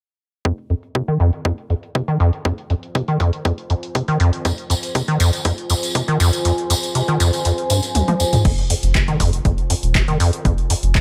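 A straight 4/4 pulse at 120 BPM drives this trippy acid house passage in F minor: an overdriven, punchy electronic kick sits up front beside a squelchy, hollow square-wave acid bass riff with tube saturation, tape echo and sidechain pumping, with the acid bass and drums under filter sweeps, while an analog drum machine adds low-passed hi-hats, handclaps, toms and crash. A moody, detuned sawtooth pad with chorus and reverb enters at 2.8 seconds, a jingly, distant tambourine joins at 4.5 seconds, the kick drops out at 6.5 seconds ahead of a drum fill, and a round, deep sine sub bass arrives in the background at 8.5 seconds, set in light reverb.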